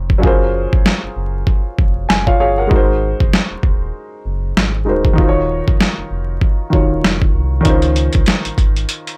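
Overdriven, sampler-style boom-bap drums sit up front in this confident, nostalgic hip-hop excerpt, with a thumpy kick, a medium-tuned snare and hi-hat that sound gritty, compressed and re-recorded in a small room. The groove moves at 97 BPM in 4/4 with a 58% swing on the 16ths, in Db major. An intimate grand piano carries the accompaniment from 0.0 to 9.2 seconds, vintage and smooth in tone with short sustain and audible action noise. Beneath it, a deep, full sub bass blends sine and triangle tones with an octave, sustained notes and a fast attack, until 8.9 seconds. The harmony passes through Gbmaj9#11, Ab9, Ebm9 and Dbmaj9 over a break that runs to 7.7 seconds. The mix is dry with little reverb, shaped by hardware-style transformer saturation and vinyl crackle.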